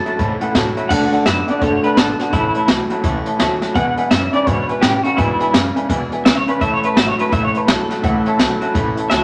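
A moderate studio reverb surrounds this rollicking, upbeat rockabilly excerpt, which swings at 168 BPM in A major and moves from A to D, back to A, then to E7 at 3.8 seconds before returning home. The jazz brush drum kit sits up front, with dark cymbals, a high-tuned snare and a punchy kick played with brushes across crash, hi-hat, kick and snare. Two electric guitars run through a small old amp, both slightly broken-up, compressed and lo-fi with tremolo. One carries the melody in a warm tone, and the other, darker, picks out a low riff. Beneath them, a woody, thumpy pizzicato upright bass on steel strings holds the bottom. A bright, full-bodied dreadnought acoustic guitar is picked along in the background, and a mellow, slightly detuned upright piano joins at 0.1 seconds with intimate action noise audible in its upper-register accompaniment.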